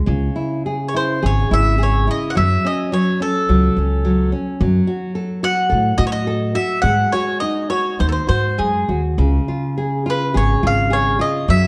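Set in a dark production with a moderate recital-hall reverb, this mournful, passionate fado-style ballad excerpt in a free, rubato feel opens with a bright, fingerpicked nylon-string guitar and a thumpy pizzicato upright bass, joined at 0.9 s by a woody, double-strung mandolin carrying the melody up front, as the harmony moves from C#m through F#m and F#m6 to G#5 before settling on C#.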